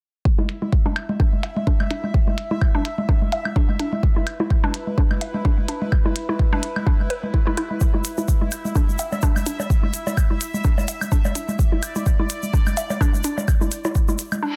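Minimal techno at 127 BPM with a quirky, hypnotic pull, built on a deep, up-front electronic kick, clicky low-pass-filtered hi-hats, and delayed congas, woodblock and bongos that sound re-recorded in a small room, all swung on the 16ths. A hollow, bouncy square-wave pluck with a warbling chorus and digital delay carries the riff, while a bubbling, detuned sawtooth texture with random resonant filter steps and a bright reverb tail hovers alongside, both pumping against the kick. A grainy, close egg shaker joins at 7.8 seconds, and a reverse cymbal flicks in at 14.4 seconds as this fragment of a longer piece closes, all within a dense, heavily limited and fairly dry mix.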